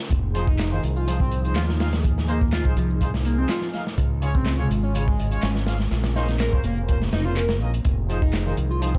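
Breakbeat drop that feels gritty and energetic, built on a crunchy, saturated drum kit with a tight kick and rolled-off top, a bright, punchy fingered electric bass, and a faint tape-toned electronic shaker and handclaps. A screaming, guitar-like overdriven synth lead enters at 0.3 seconds with distortion, phaser and delay. Clear vintage brass stabs sit behind a low-pass filter, and a swirling, detuned analog pad pumps in the background over Fm7, Db and Bbmadd9 in a dark, lightly reverberant mix.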